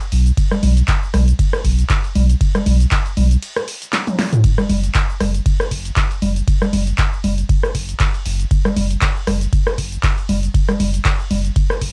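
Acid house with a raw, trippy mood and a light 16th-note swing, cut from a longer piece and captured as a dry home recording on cassette. A punchy analog drum machine runs throughout with congas, cabasa, handclaps, hi-hat, ride, rim click, toms and a snare given a short room, joined from 0.4 seconds by a deep, dry electronic kick, both carrying a cassette-tape grit. A round sine sub bass, sustained with a fast attack, sits up front and pumps against the sidechain, while a brief break at 3.4 seconds ends in a drum fill.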